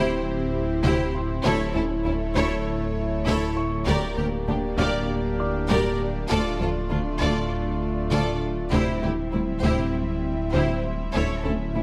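This tense, brooding hybrid orchestral and electronic film cue opens on a lush bed of bowed strings, with a vibrato-rich violin section carrying the melody over a focused second violin line and a distant viola accompaniment, while an airy, breathy pad with chorus and a mellow French horn section hold sustained chords. Beneath them a tight, nasal sequenced synth runs very quiet arpeggios, and a deep, rumbling detuned saw bass sits up front on a single low note. At 0.8 seconds expressive cellos and rich double basses join the bass line, and from 1.1 seconds a felt-muted upright piano with delay adds an intimate, dark texture in the background, its action noise audible.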